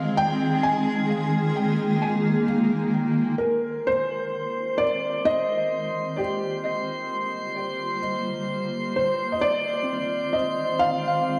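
A felt-muted upright piano carries the melody up front, its soft, boxy tone and thin felt giving an intimate, mellow voice, with audible action noise and a tape echo trailing each note. This short ambient excerpt in 3/4 feels peaceful and unhurried, its harmony settling on Fm7, moving to Gm7 and returning to Fm7. Beneath the piano, a granular cloud pad holds sustained chords with a slow attack and long release, its detuned, blurred sound evolving inside its own reverb and gradually fading in from 3.4 seconds. A tine electric piano enters at 3.5 seconds with clean arpeggios through a combo amp, set in the background with phaser and tape echo and also fading in. From 4.0 seconds, a drifting glass-harmonics texture adds calm, glassy overtones up high, softened by chorus and reverb. The whole mix sits in a wet spring reverb, leaving an echo-heavy, cloudy wash around the parts.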